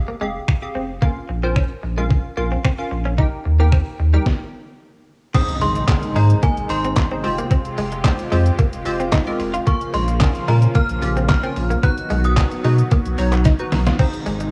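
A deep, saturated sub bass pumping up front and crisp, nasal wavetable chord stabs open this euphoric, summery dance-pop excerpt at 111 BPM in Ab major. They are joined by a bright, twangy clean electric guitar riff bathed in lush chorus and then an overdriven, detuned 8-bit drum machine with a thumpy kick, all colored by cassette tape and a small-room ambience. After a stop at 4.3 seconds, a very quiet impact lands at 5.3 seconds as a mellow, inharmonic FM chime melody with tremolo and analog delay enters alongside an airy, evolving supersaw swell holding sustained chords, while a very quiet group handclap joins at 5.9 seconds. The progression moves through Fmadd9, Bbm and B before a drum fill at 13.5 seconds sets up a return to Ab.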